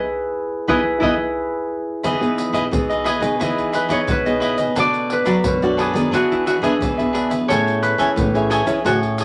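Festive and playful, this short cut from a longer piece blends samba and choro at 88 BPM in E major, with a straight 4/4 feel. A mellow, ringing concert harp carries the melody up front, opening alone before the band joins at 0.7 seconds. A crisp, picked cavaquinho sits forward in the mix while a fingerpicked nylon-string guitar fills out the harmony with a classical touch and audible finger squeak. A second nylon-string guitar, thumb-plucked, holds down the bass line beneath them. Deep surdo, tube shaker and pandeiro played with soft hands keep the percussion close and dry in a moderate studio room, as the chords move from Emaj7 through Bm7 and E7 to settle on Amaj7.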